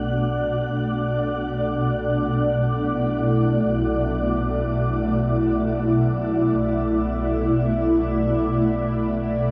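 Ambient in free time, spacious and melancholic, this excerpt sets a shimmering, ethereal pad with octave-up shimmer, chorus and phaser sustaining Bm7 and Dsus2/B chords up front over a clear, lush bowed double bass section holding a low B1 with vibrato, while an airy, breathy wind-like noise texture drifts above and the synth texture fades out across its 9.5 seconds, all set in a vast, echoing space with a dark, softened top.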